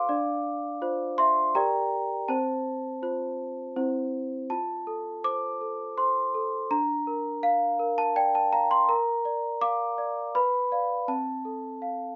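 A large solo celesta, bell-like and ringing with the sweet, vintage tone of hard felt hammers, sits up front in light reverb for this tender, innocent classical lullaby in 3/4, spanning C4 to D6 over gentle harmonies that move from Dm7 through Gm and C to a second section beginning at 4.5 seconds, where F, Bb and a Bdim chord lead to F/C before the piece is cut off at 12.2 seconds.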